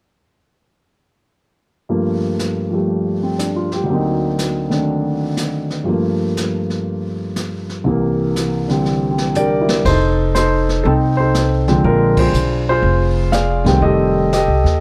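A loping swing in four, with the eighth notes lilting, drives this playful jazz piano trio fragment, lifted from a longer piece. From 1.9 seconds an up-front grand piano carries the melody with an intimate, natural tone, long sustain and audible action noise, set in a plate reverb, while a distant, roomy brush kit with dark cymbals, a medium-tuned snare and a boomy kick sits further back in the mix. The harmony moves through minor-ninth and altered dominant colours such as Gm9 and D7b9b13 before settling onto F7, Bb9 and F9. A drum fill at 8.9 seconds sets up the second section, where a woody, thumpy pizzicato upright bass with steel strings enters up front at 9.8 seconds. A band accent punctuates the swing shortly after, all within a dark, warm production and light reverb.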